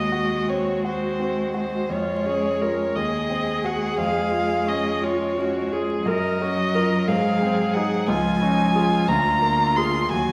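A reverberant recital hall with a 1.4-second decay surrounds this lyrical, tender slow movement for piano quartet, and a vinyl crackle sits over the recording. The music moves at 58 dotted-quarter beats per minute in 6/8, in D-flat major, with uneven beats and a flexible rubato. A warm, smooth violin carries the melody up front with vibrato, while a clear, even cello sings a second line beneath it with light vibrato. A polished concert grand piano with deep bass provides present accompaniment, joined by a rich, focused viola that sounds more distant in the hall. All four instruments play throughout this short passage cut from a longer piece, as the harmony moves from Ab7/Eb and Db/F through Gbmaj7 and Ab to Db before turning to Bb7/D at 9.1 seconds.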